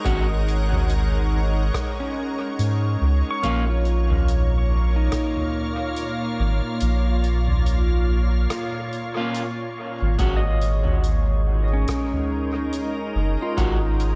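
Ambient dub with a hazy, deep mood, swung at a slow, unhurried pace in this short excerpt cut from a longer piece, built on a round, up-front sub bass and a calm, detuned organ-like pad holding sustained chords with ensemble chorus and its own reverb. A twangy pedal steel guitar plays bright, clean fingerpicked arpeggios with slide and volume swells through dub echo, while a dark, slightly broken-up electric guitar adds picked stabs, also echoed, at the start and again from 9.2 seconds. A tape-warm electronic kick sits in the background and drops out between 6.8 and 10.2 seconds, alongside a natural soft-mallet kit of hi-hat, rim clicks and toms sent through dub echo, all in a small room with light reverb.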